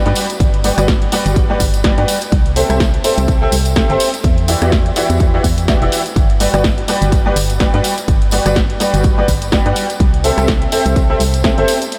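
Feel-good and euphoric, this piano house passage moves at 125 BPM in 4/4 with a 57% swing on the 16ths, set in G major and tuned to A4 = 445 Hz. A clear, woody upright piano sits up front playing the riff from 0.0 seconds, its vintage tone treated with ensemble chorus, sidechain pumping and a diffuse ambient delay, while the chords move through Gmaj7, C6 and Em9 before returning to Gmaj7 and C6. Underneath, a hollow, organ-like FM bass with a fast attack and dark decay carries the low end, pumping along with the sidechain. A punchy analog drum machine supplies dry hi-hat, rim click and snare, joined by a layered electronic kick from 0.4 seconds and a tambourine sitting in the background alongside egg shaker and group handclap touches. The whole mix is dreamy and soaked in a huge ambient reverb with a 7.0-second tail, and the passage is cut from a longer piece.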